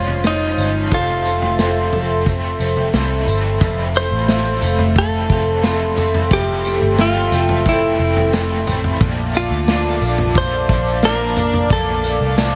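Light reverb and a small-room ambience frame this blissful, ethereal dream pop in F major at 89 BPM, where a clean, compressed electric guitar recorded direct carries the melody through digital delay. Around it, a shimmering, octave-doubled twelve-string acoustic guitar picks arpeggios with finger squeak and lush chorus, a double-tracked, overdriven garage guitar adds accompaniment through tremolo and analog chorus, and a hollow, flute-like pad holds slow-attack chords. A dark, foam-muted picked bass and a muffled, lo-fi vintage kit of kick, snare, tambourine and toms ground the harmony as it moves from Fmaj7 to Bbmaj7 at 9.0 s.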